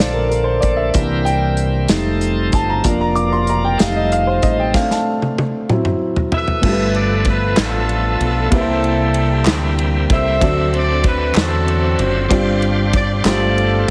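A woody upright piano opens this slow, jubilant and reverent gospel piece in 6/8 at 64 BPM in Bb major, taking a solo over the full band from the start. Beneath it, a bright, shouting tonewheel organ holds sustained chords through a slow rotary speaker with light overdrive and audible key click, while a dark, round fingered electric bass sits punchy and up front. An acoustic drum kit with a medium-tuned snare and punchy kick, heard in a small room, plays a fill at 4.7 seconds. A horn section with vibrato enters at 6.3 seconds and carries the melody in a roomy, jazz-styled ensemble sound, and crisp group handclaps join from 7.6 seconds, distant in a large room in the background. The harmony moves through rich extended chords such as Bbmaj7, Amadd11, G13 and D9 before settling on G9sus4, all under light reverb and a heavily compressed, radio-like sound in this section cut from a longer piece.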